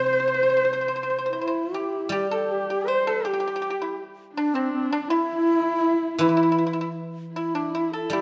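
Close, detailed microphones capture this short, festive and graceful passage of Chinese traditional chamber music inside a moderate concert-hall reverb, moving freely at around 80 BPM in 2/4 in the C gong mode. An airy, up-front low bamboo xiao carries the tongued, straight-toned melody, while a bright, dry pipa, plucked with fingerpicks, and a husky, boxy horsehead fiddle, bowed with vibrato and portamento, trace second lines alongside it. A guzheng adds ringing, silvery accompaniment in a lower register throughout the 8.2 seconds.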